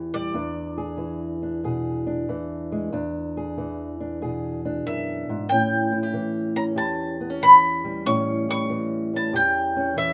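Blues with a rollicking, soulful swing, this excerpt pairs a fingerpicked old ladder-braced acoustic guitar, dark and boxy with the dull ring of aged strings, against a mandolin carrying the melody in a warm, picked, double-strung voice. The guitar accompanies throughout, moving from E7 to A7 at 5.5 s, while the mandolin states a brief phrase, falls away, and returns at 4.9 s to sing to the end. Both instruments sit up front with a woody character, wrapped in a moderate small-room reverb.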